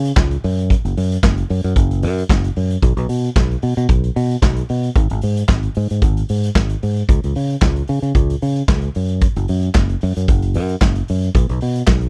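A glamorous, danceable disco groove at 113 BPM starts at once with a growly, direct fingered electric bass and a vintage acoustic drum kit of punchy kick, medium-tuned snare, hi-hat and handclaps in a small, pumping room with a rolled-off top, both parts up front with little reverb across this 12.1-second fragment of a longer piece.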